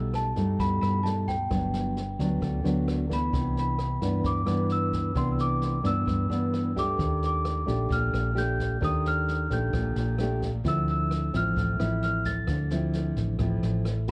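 A sunny, romantic bossa nova excerpt at 131 BPM opens with thumb-plucked nylon-string guitar chords and a round, dark hollow-body electric bass, joined at 0.1 s by brushed jazz drums with a boomy kick, rim clicks and snare, before a bell-like, delicate celesta with analog delay carries the melody from 0.2 s to 12.7 s over lush chords moving from G major into C major, all set in light studio reverb with a cassette tape character.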